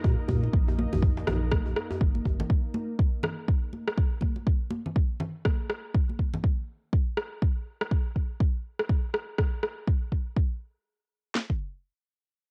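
An electronic afro-pop drum kit sits up front through this short excerpt of an afro house track, its deep kick and sharp snare carrying a cassette-tape grain at 122 BPM in 4/4 with a 60% swing on the sixteenths. For the opening seconds an ethereal, airy pad of detuned sawtooth and triangle voices holds a Bb5 chord with a slow attack and long release, thickened by ensemble chorus and its own reverb, pumping against the sidechain alongside a round sine sub bass. The pad, bass and a tight, cracking djembe with metal rattles and soft hands all drop out by 2.5 seconds, where the harmony falls away. Bright, close and dry congas played with hard hands run from 0.3 to 6.4 seconds, while a layered, overdriven electronic rim click joins up front at 1.3 seconds. The whole piece carries an earthy mood, tuned to A4 = 439 Hz, and sounds like a home recording on cassette in a small room, moving from its first section into a second at 10.4 seconds.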